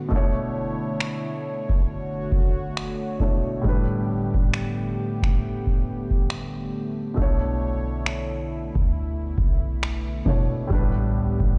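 A slow, swung groove of deep kick drum and finger snaps comes from a booming analog drum machine, dry and up front with a gritty, vintage 12-bit sampler edge. This contemporary R&B fragment feels longing and sensual, built on chords that move between Bm11 and A9sus4. A grand piano plays short-sustained, up-front accompaniment over a smooth, mellow sawtooth pad that swells in slowly and holds its chords under a chorus effect. At 7.2 seconds a clean, sine-toned 808-style bass arrives, dark and boomy with a fast attack that decays away. The whole piece sounds as though it is played on a big sound system in a bare room, with a large studio reverb and a dulled top end, and it is cut from a longer piece.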